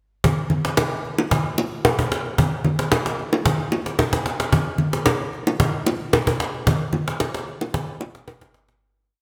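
Late-night and hypnotic, this complete amapiano piece moves at 112 BPM in a straight 4/4 feel, with the groove running from 0.2 s to the end. An up-front acoustic cajon, woody in tone with faint snares and played with hard hands in a live room, carries the amapiano pattern of soft kick and syncopated rim. Congas and bongos sit just as close, their bright, hard-handed pattern captured in a small room and stopping at 8.5 s. A lush, wet hall reverb with a 2.5-second tail surrounds the percussion, set within a 1980s-style digital production that carries a faint mains hum. The piece fades out from 6.7 s.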